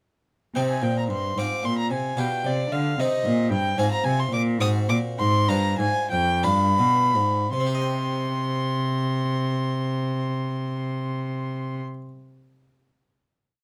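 Close, detailed microphones and light reverb give this brief baroque-style sonata movement with continuo an intimate, present sound. It is a complete piece in a flowing, solemn 6/8 with a straight feel. A single bowed violin carries the melody up front, its period-style tone rich and reedy with light vibrato. Beneath it a single cello, dark with a smooth top and a matching gut-string character, plays a walking and sustained bass line, while an airy, bright French-style harpsichord plucks bass notes and chords on the beats. The pace slows between 3.0 and 7.5 seconds, and from 7.5 seconds a final chord sounds until the harpsichord, the last part playing, stops at 12.1 seconds.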